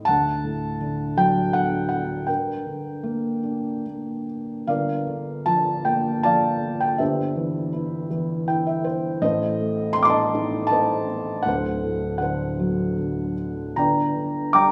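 A felt-muted upright piano plays alone from the start, its soft, intimate tone sitting up front in this dark, wistful excerpt of lyrical classical solo piano in G minor, moving in a rubato 3/4 at roughly 71-83 BPM. The harmony drifts from D into G minor, then through C over G, a diminished A chord and D7 before settling back on G minor, with a short piano fill at 8.1 seconds. A moderate concert-hall reverb blended with a small-room ambience lends the thick-felt sound a gentle sense of space.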